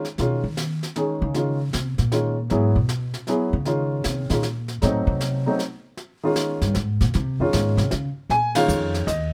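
The piano and a brushed drum kit open this cool, swinging jazz piano trio fragment, with upright bass joining at 0.2 seconds. It moves at a brisk 155 BPM in 3/4, swung on the eighths, in B-flat minor. The plucked upright bass takes a solo that runs until 8.3 seconds, sitting up front with a woody, steel-string tone. The upright piano carries the melody with a warm, short-sustained sound over a shifting harmony that passes through Db7sus2, Bbm11, Adim7 and a rootless Bbm9 before settling on Bbm7. The drums stay further back, with a high-tuned snare, dark cymbals, hi-hat and ride in a small room, and the band hits a shared accent at 8.5 seconds. Light reverb surrounds the whole trio.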